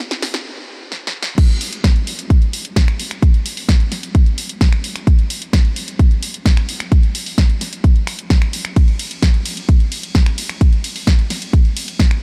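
Uplifting and triumphant, this EDM excerpt runs at 130 BPM in a straight 4/4, cut from a longer piece. A house drum kit opens at 0.1 seconds with crash cymbal, finger snaps, hi-hat, ride cymbal and snare, its punchy snare and bright hats giving a layered, produced electronic edge. The opening build-up brings drum fills and a brief stop before the drop lands at 1.4 seconds. There an electronic kick drum enters, punchy and up front, carrying a high-pass filter and sitting louder than the kit. The sound is dry with little reverb and a high-pass filter across the mix, and the drop drives on to the close at 12.2 seconds.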